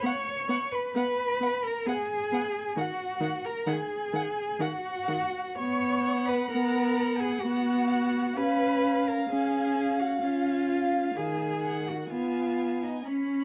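An up-front viola carries the accompaniment in this serene, lyrical slow romantic movement for string quartet, its bowed tone smooth and even with vibrato. The piece moves at 65 BPM in 3/4 with a rubato feel, and this short fragment is cut from a longer work, running as a single section to 13.4 seconds. A dark, woody first violin sings the melody high above, while a second violin enters at 0.1 seconds with a soft attack, expressive portamento and a distant placement. Beneath them, a rich, focused cello holds the bass, also close and present, and every player colours the line with vibrato. The harmony drifts from B5 through D#madd11, C# and D#m to G#m/B, set in a moderate large-studio reverb with a dark, warm production.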